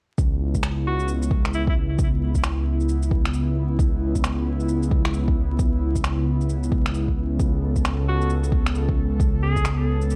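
A light reverb and a layer of vinyl crackle give this short future garage excerpt a worn, intimate surface, and its mood is wistful and melancholic with a swung sixteenth-note feel. An airy, breathy pad holds soft, full-bodied sustained chords throughout, its chorus and sidechain pumping making it breathe around the beat. Beneath it, a dark detuned saw bass sits up front, deep and rumbling with a beating, saturated edge. The drums pair an overdriven electronic kick with layered electronic shaker and finger snaps, both re-recorded in a small room for a roughened, boxy character. An edgy alto saxophone with light vibrato and delay cuts in briefly near 0.9 s and returns at 8.1 s with punchy, forceful, vintage-toned phrases, just after the harmony shifts from C#m7 to Aadd9/C# at 7.4 s.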